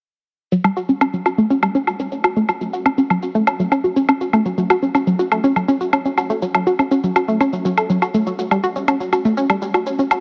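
A straight 4/4 pulse of layered, electronic shaker and woodblock, low-pass filtered and set in studio reverb, drives this dark, melancholic melodic techno excerpt at 122 BPM in F# phrygian, as an up-front analog pluck with a round, sawtooth-and-square tone, a noise layer and a fast attack spins arpeggios from F#3 to A4 through chorus, dub echo and a filter sweep from 0.5 to 10.2 seconds, all under light reverb and a heavily compressed, radio-like sheen.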